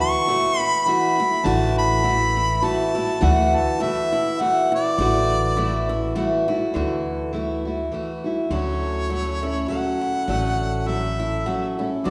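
Gentle and warm, this acoustic folk fragment in D major sways in a lilting 3/4 at 102 BPM, with a clear, soft-attacked harmonica singing the melody with light vibrato up front over a picked steel-string guitar accompaniment and a second, boxy guitar adding quiet arpeggios, while a woody, dark pizzicato upright bass joins at 1.5 seconds, all bathed in the lingering reverb of a church or concert hall as the harmony moves from Dadd9 to Dmaj7 at 8.5 seconds.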